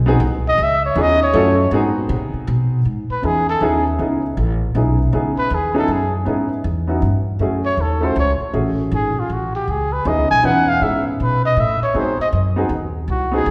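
A woody, thumpy upright bass opens this moody jazz waltz fragment, plucked on gut strings at a swinging 158 BPM in 3/4 and C# minor. A clear upright piano joins almost at once in an intimate accompaniment whose short sustain lets the audible noise of its action come through. At 0.5 seconds a dark, breathy trumpet takes the melody with light vibrato, soloing up front through the opening seconds before the harmony settles into a longer stretch from 2.9 seconds. The changes circle between C#m9, F#m7 and a tense G#7#9, giving the swing a shadowed, restless cast. All three instruments sit close and present, while a recital hall's reverb lends the sound a spacious, churchlike glow.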